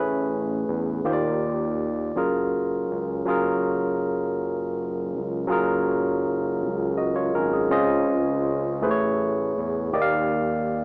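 In a slow, straight 6/8 at 54 BPM, this intimate R&B fragment of a longer piece moves through lush major-ninth chords, from Amaj9 to Ebmaj9 and Gbmaj9, then shifting to Dbmaj9 at 7.7 seconds before circling back. A bright, barky tine electric piano sits up front with light overdrive and a combo-amp bite, while a smooth, mellow synth bass blending sawtooth and triangle tones holds sustained low notes beneath it, tinted by transformer saturation. Light reverb and the lo-fi character of a home cassette recording heard through a small speaker give the whole thing a cozy, homespun feel.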